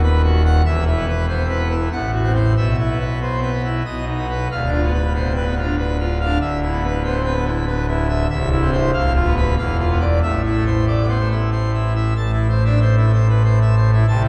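Stormy and dramatic, this short cut from a longer classical organ toccata moves at 94 BPM in 3/4 with a straight feel, settling into A minor from 4.5 seconds after opening on B/D# and passing through diminished and open fifth harmonies before landing on Am at 10.2 seconds. A solo pipe organ on full registration spans from C1 up to A5, its mixtures giving a majestic, brilliant sound with romantic voicing set up front. The instrument sits in a church reverb with a 3.1-second decay, heard from further back in the room, and a new section begins at 12.2 seconds.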